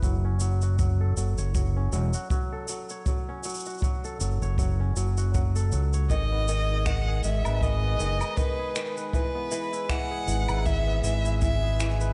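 An overdriven, amped electric bass sits up front and punchy through this short cut from a longer folktronica piece, anchoring an autumnal, wistful mood in a lightly swung 4/4. Above it, a fingerpicked kora plays ringing, crisp arpeggios, softened by a low-pass filter and trailed by delay. Distant, roomy percussion of cabasa, finger snaps and woodblock, played with brushes and rolled off at the top, joins a punchy acoustic kick drum from a small room. At 6.1 seconds a single close, bowed violin enters with the melody, expressive with vibrato, portamento and a soft attack, its line echoed by delay, while a reedy, breathing pedal harmonium adds mellow, dark sustained chords. The harmony moves from F#m to G#m and then to E, and the whole is set in light reverb and a small room ambience, with a top end that stops at 11 kHz.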